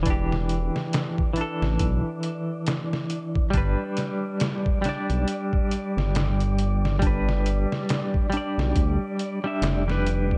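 A melancholic, hypnotic trip hop excerpt at 69 BPM with a swung 16th-note feel, moving from Em7 to G at 3.5 seconds under a dark, warm digital ambience. A semi-hollow electric guitar plays clean, hollow-body accompaniment colored by tremolo and tape echo, while a detuned saw bass sounds deep and rumbling with tube saturation, and a gritty, pitched-down sampler-style drum kit with a thumpy kick and studio reverb enters at 0.1 seconds. Behind them, a breathy, wind-like tuned noise texture hovers in the background, bathed in its own reverb.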